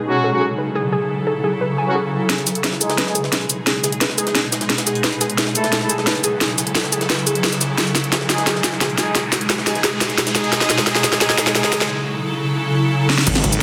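Dark technical drum and bass at 175 BPM in G# phrygian, mechanical and aggressive, opening on a swarming, tense drone of sustained chords with sidechain pumping, distant mellow brass stabs through a low-pass filter and delay, and a warbly, lo-fi pluck arpeggio with chorus and delay. At 2.3 seconds an overdriven drum and bass kit with a cracking snare and bright hats arrives up front, layered with a very quiet, gritty, pitched-up jungle sampler-style kit, as a filter sweep opens across the brass and a long fill drives toward a break at 11.9 seconds, with a very quiet riser building from 5.0 seconds. The build drops at 13.3 seconds onto a snarling, growling distorted saw bass and an overdriven electronic kick, all bathed in a lush digital hall reverb under a dense, heavily limited master.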